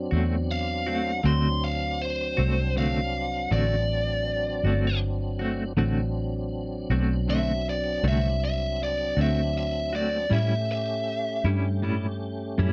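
A dry, close 1970s-style studio sound frames this rollicking, swaggering slow blues in 12/8, where a biting, overdriven lead guitar sings the high melody over a twangy, compressed clean guitar with tremolo, a round, foam-muted vintage bass up front, and a full tonewheel organ holding sustained chords through chorus vibrato and a slow rotary speaker, all riding a D7 groove that turns to A7 at 10.3 seconds.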